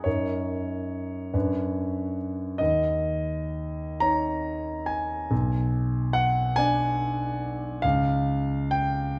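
A clear concert grand piano opens the recording alone and carries it through to 9.2 seconds, in a dreamy, serene impressionist classical vein. The music moves in a slow, flowing 6/8 with a free, rubato feel, as though the pulse is allowed to breathe. Its harmonies drift from D#m7/F# through Bmadd9/F# and Bm6 before settling on Db near 7.8 seconds, lending the passage a hazy, suspended colour. The piano has a natural, up-front presence with a deep bass reaching down to B1, while its upper notes rise to A#5. Close, detailed microphones capture the instrument within a moderate recital hall reverb, and the passage is cut from a longer piece.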